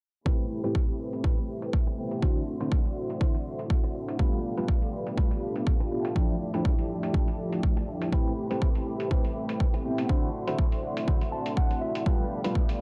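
Filtered disco house at 122 BPM in A minor with a sensual, groovy swing, where a punchy, up-front analog kick and gritty sampled hi-hat ride under a filter sweep while mellow, detuned synth brass carries the chords through Am9, D9, G9 and Fmaj13, a lush bowed violin section and a twangy clean guitar riff sit in the background with sidechain pumping, and the guitar adds a fill at 11.1 seconds in this short piece cut from a longer track.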